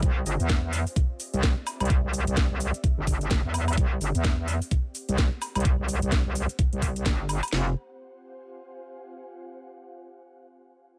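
A dry, up-front mix opens this swaggering, gritty bass house excerpt, built on a swung garage drum kit with a knocking kick, cracking snare, metallic hats, shaker and woodblock, all carrying a tape-warm, layered electronic sheen. A saturated, bright wobble bass with a metallic FM bite sits forward in the mix, driven by overdrive and chorus and pumping against the kick. Far behind them, an ethereal, detuned pad drifts in with a slow attack and hazy ensemble chorus. The harmony shifts from Cadd9 to Fm at 7.5 seconds, and the pad then carries on alone after the beat and bass stop at 7.7 seconds, ending at 9.4 seconds.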